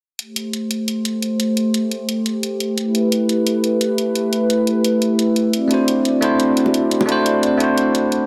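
A smooth, warbling analog pad with chorus and a filter sweep opens at 0.2 s alongside a layered electronic hi-hat, setting a soulful, dreamy liquid drum and bass groove at 174 BPM in A dorian, moving through Am7, G69 and D9. At 5.7 s a bright, bell-like tine electric piano with delay joins up front, and a very quiet, round, low-tuned bongo part appears briefly at 6.7 s. A plate reverb soaks the whole mix in digital ambience.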